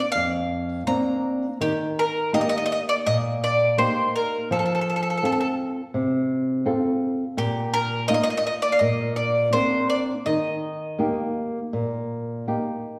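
A straight 4/4 pulse at 83 BPM carries this sunny, lively Italian folk serenade in Eb major, cut from a longer piece, with a picked, double-strung bowl-back mandolin singing the melody up front over chords moving from Bbadd9 through Eb, F and Bbsus4. Beside it, a dark, boxy flamenco guitar gives thumb-plucked accompaniment with audible finger squeak, carrying on alone after the mandolin stops at 11.3 seconds until 13.0 seconds. The pair sit in a wet recital hall, heard from further back in the room.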